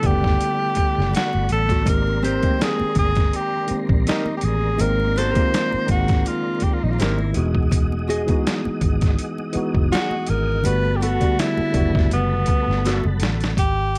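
Smooth and warm, this 82 BPM neo-soul R&B excerpt sets a breathy, scooping tenor saxophone up front over a worn, slightly out-of-tune overdriven electric piano, a faint slow-rotary tonewheel organ, a round, foam-muted bass, a gritty pitched-down boom bap drum kit with a thumpy kick and a fill at 12.8 s, very quiet damped high-tuned congas, and a full-bodied fingerpicked nylon-string guitar with tape echo entering at 1.7 s, all bathed in light reverb and vinyl crackle as the chords drift through Gmaj9, Abmaj9 and Emaj9.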